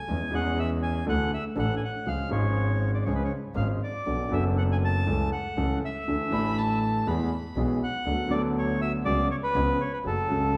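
Loosely pulled in a rubato 4/4, this dramatic, passionate tango fragment is led by a reedy, dark bandoneon singing the melody up front. A clear concert grand piano with deep bass lays down the accompaniment, while a bowed double bass adds a biting, earthy low line with light vibrato. A nasal, boxy violin slips in briefly between 6.3 and 7.7 seconds as a second line, all within the lush reverb of a church or concert hall.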